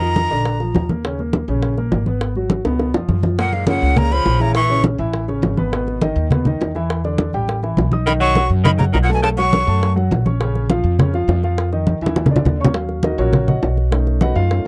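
A breathy, bright jazz flute with crisp, chiffy attacks and vibrato carries the melody in short bursts at 0.0, 3.4 and 8.1 seconds, shadowed low by a clear, scooped tenor saxophone, in this driving, sophisticated Afro-Cuban jazz cut in Eb minor at 205 BPM. Underneath, a dark, mellow grand piano comps throughout and takes a brief solo at the close, while a woody, growly pizzicato upright bass sits up front beside damped, thick-skinned congas and tight, high-tuned bongos. The sound is dry and close, with light reverb and a 1970s studio character, and drum fills mark the turns into new sections.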